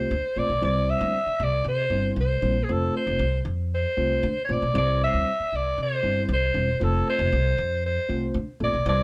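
A growling alto saxophone with raspy vibrato and plate reverb carries a jazz-style solo melody from the first second over a clean, mellow tine electric piano and a woody pizzicato upright bass in this joyful, uplifting 1960s-style soul piece at 116 BPM in F major, moving between F and C chords in a short, light-reverb cut from a longer track.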